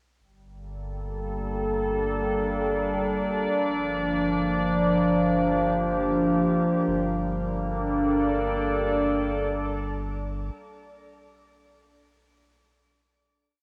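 Melancholic and spacious, this short ambient piece drifts in free time in G minor, tuned slightly below standard pitch. A deep, round sub bass enters first at 0.2 s, holding a sustained root on G1 quietly beneath everything. An evolving wavetable pad arrives at 1.1 s and sits up front, its mellow, warbling, sine-like tone morphing as it rises on a slow attack and lingers with a long release, coloured by chorus, shimmer reverb and the vintage character of cassette tape. The slowly shifting chords move from Gmadd9 to Bb6/G and return to Gmadd9 at 6.9 s, where a final chord holds until 10.2 s, and the pad fades out at 11.0 s. The home recording has a wet booth ambience and a faint mains hum, lending the piece an intimate, worn feel.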